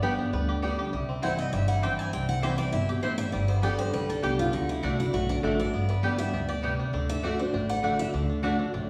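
Bathed in the reverb of a recital hall, this lively, virtuosic bluegrass fragment in G major races along at 200 BPM in a straight 4/4, with an up-front picked steel-string acoustic guitar taking a solo melody from 1.2 s over a bright, full-bodied second guitar's accompaniment, a twangy banjo played with fingerpicks, double-strung stabs from a woody mandolin and a warm pizzicato upright bass.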